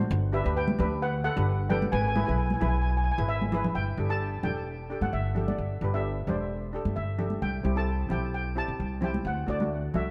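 Sunny and bouncy, this calypso excerpt moves at 131 BPM in a straight 4/4 in G major, cut from a longer piece. A double-seconds steel pan opens the recording at 0.0 s with metallic chords struck with hard rubber sticks, its tone boxy as if in a small room. A pizzicato upright bass with steel strings sits up front, woody and warm. A lead steel pan carries the melody from 0.3 s, shimmering and airy under medium rubber sticks, trailed by tape echo. Damped, thick-skinned congas played with soft hands bring a vintage, band-limited color, and a drum fill near 3.4 s leads into a new section at 3.8 s, where the harmony moves from Gsus2 through Cmaj7 to D. A plate reverb soaks the whole mix in a dreamy haze.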